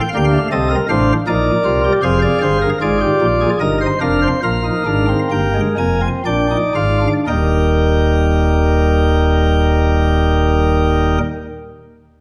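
A lush recital-hall reverb, lingering for about 1.6 seconds, surrounds a solo pipe organ placed up front, its flute stops light and sparkling with a crisp chiff at the start of each note. This short, stately cut from a longer baroque-style classical work unfolds as a four-part fugue in Eb major, in 3/4 with a straight feel and a tempo between 57 and 80 BPM. The organ alone spans from a deep Eb1 to a bright Ab5, its baroque voicing giving the counterpoint an elegant clarity. The music slows from 0.9 to 7.3 seconds as the harmony moves from F7 through Bb and dominant chords such as Bb7sus4 and Bb7. At 7.3 seconds it settles onto Eb, opening a new passage that carries the fugue onward.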